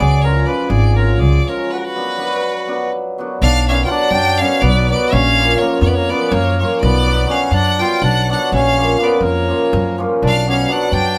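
Lightly reverberant and captured live in one room, this fiery, restless Balkan folk excerpt in 7/8 sets an intense, bowed solo violin with vibrato on the melody over a reedy accordion second line, a shimmering, hammered cimbalom ringing out the accompaniment and a woody pizzicato upright bass sitting up front, with a break at 1.7 seconds before a new section opens at 3.4 seconds.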